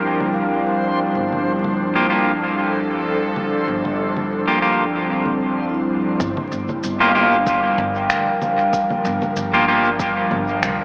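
Hazy and deep, this ambient dub excerpt in G minor moves at 95 BPM with a light swing, opening on a Gm7 chord as an airy, breathy pad with chorus sustains chords under mellow soft-mallet vibraphone arpeggios, a woody pizzicato upright bass and a reversed, granular swelling texture in the background that drops out at 6.2 seconds. Muffled electronic congas, cabasa and finger snaps enter at 0.2 seconds through dub echo, and a twangy, slightly broken-up electric guitar sits up front with spring reverb and dub echo on its stabs from 2.0 seconds. An overdriven electronic kick adds weight in the second section, all set in a wet scoring-stage reverb with vinyl crackle and a small-speaker tone.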